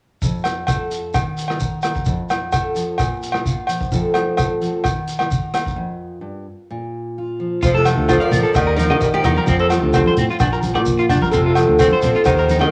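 A warm, carefree highlife guitar band clip, cut from a longer piece, opens with a boxy, picked acoustic guitar, a vintage drum kit with a boomy kick and rim clicks, a grainy shekere and ringing agogo bells, all set in a small room with cassette-tape character and a break at 5.8 seconds. At 7.6 seconds the band fills out: a full-bodied jumbo acoustic guitar with audible finger squeak takes the melody, a slightly broken-up electric guitar plays arpeggios through analog delay, and a round, dark fingered bass arrives. A raspy, gritty tenor saxophone plays a second line in the background, and bright congas join at 8.3 seconds.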